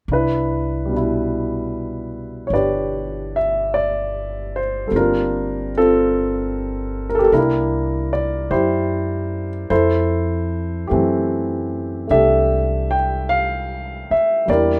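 A warm grand piano and a woody, thumpy pizzicato upright bass open together at 0.1 seconds in this tender, romantic jazz ballad in C major, moving slowly at 50 BPM in 4/4 with a gentle swing. The intimate piano sits up front, its action noise audible, while the lower bass supports it through Cmaj9, Gm11, C9 and Fmaj9. Both are wrapped in a moderate club reverb, and the passage ends at 14.8 seconds as a fragment of a longer piece.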